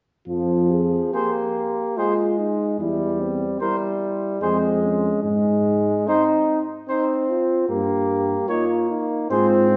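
Solemn and grave, this short excerpt of a classical brass quintet in F minor moves at a rubato 74 BPM in 3/4, as a distant, roomy trombone shares the accompaniment with a soft-attacked, lightly vibrato French horn over a present tuba bass from 0.3 seconds, before a clear trumpet melody with light vibrato and a very quiet flugelhorn second line enter at 1.1 seconds, all set in the wet reverb of a recital hall.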